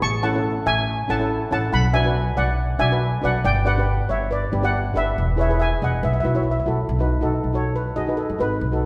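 A lightly swung sixteenth-note groove at 140 BPM drives this festive, carefree calypso fragment, where a shimmering lead steel pan played with soft rubber sticks carries the melody up front over an airy double seconds pan accompaniment and a woody pizzicato upright bass, moving through A, B minor, G and E before a Bsus4 resolves to B as the lead pan takes a solo from 6.9 s, all bathed in the long, wet reverb of a concert hall.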